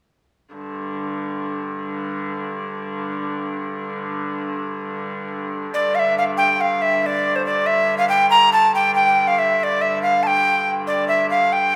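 Ancient and mysterious, this medieval fragment cut from a longer piece moves at 93 BPM in a straight 6/8, opening at 0.6 s with a nasal, earthy hurdy-gurdy drone low in the mix before a breathy, chiffy tenor recorder with a woody, straight tone enters up front at 5.7 s to carry the melody, all bathed in a wet recital hall reverb.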